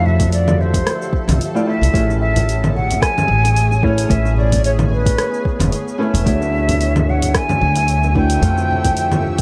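Echo-heavy and lightly reverberant with a small-room ambience and some lossy compression artefacts, this blissful sunset chillout excerpt in A major moves at 111 BPM with a 16th-note swing over Fmaj9, Amaj9 and Dmaj9 chords. An airy concert flute with vibrato carries the melody through analog delay, while a fingerpicked flamenco guitar, finger squeaks and all, accompanies through a low-pass filter and dub echo, and a dark, ethereal, detuned pad with granular shimmer sustains the chords beneath. A woody pizzicato upright bass sits up front, joined just after the start by very quiet, bright congas and bongos, a deep house kit of cabasa, congas, hi-hat and rim click with dub echo, and a soft, overdriven electronic kick.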